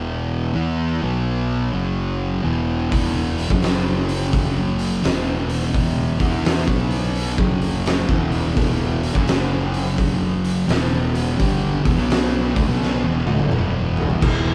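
Stoner and doom metal with a sludgy, brooding mood, swung and slow, as two fuzz guitars grind out a riff over power chords with a growly, overdriven fingered bass beneath them, the second guitar darker and sitting in the background. At 2.9 seconds an oversized low-tuned drum kit arrives up front, muffled and gritty with a fat snare, punchy kick and dark cymbals, and a drum fill runs from 12.8 to 14.2 seconds. The band plays live in one moderate stone room, and the clip is cut from a longer piece.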